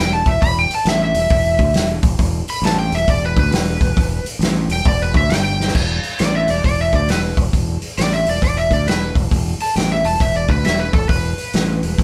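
A swung 4/4 groove at 135 BPM drives this gritty, brooding blues rock and southern rock power-trio excerpt in E minor, with a growling, overdriven fingered bass underpinning the band from the start and a vintage acoustic drum kit joining at 0.3 s with a punchy kick, medium-tuned snare, hi-hat and dark crash cymbals, its pumping room sound and rolled-off top, and a fill at 5.5 s. Up front, an overdriven electric slide guitar played with fingerpicks carries the melody as a solo throughout, ranging from A4 to B5 over an opening E5 chord. The trio plays live in one room, wrapped in moderate studio reverb.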